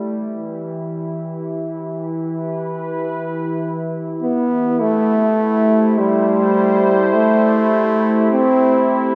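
Ambient music in free time, meditative and deep, taken from a longer piece. A warm analog pad with a chorus effect holds sustained chords from the start to 9.2 seconds. Its smooth, warbling, vintage tone has a slow attack, and it sits up front. The chords move from E minor to A minor seventh at 4.8 seconds, where the music passes into a second section. A clear, close-miked trombone enters at 4.2 seconds with a solo melody in a classical style, set up front and carried by a dub echo. A wet spring reverb and a small room ambience surround the recording, which is tuned to A4 = 437 Hz.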